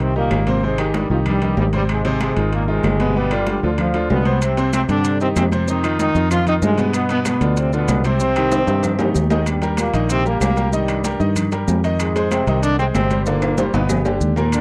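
Danceable and passionate, this salsa excerpt in C minor drives along at 190 BPM, with a punchy, tight trombone section carrying the melody up front over a brilliant baby grand piano whose action noise can be heard, and a round, foam-muted fingered electric bass. Ringing metal-shell timbales sit in the background alongside very quiet, thin-skinned congas and distant, woody claves, while grainy maracas join at 4.4 seconds. The dry, close 1970s-style studio sound carries light reverb, with drum fills marking the turn into a new section at 9.5 seconds and the final Gsus4-to-G cadence.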